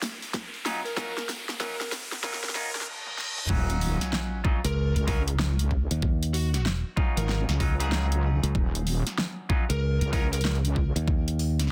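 A heavy, detuned wobble bass with chorus drops in at 3.5 seconds, anchoring this gritty, swaggering glitch hop excerpt in Eb minor at 95 BPM with a swung sixteenth feel, joined soon after by a growly fingered electric bass. Before the drop, a riser and reverse cymbal build over drum fills from an overdriven pop kit with a fat snare, while a knocking, overdriven electronic kick sits up front. Twangy clean guitar stabs pump with sidechain and delay, and a dark overdriven lead guitar carries the melody with 12-bit sampler grit and delay, all in a dry, dense, heavily limited mix.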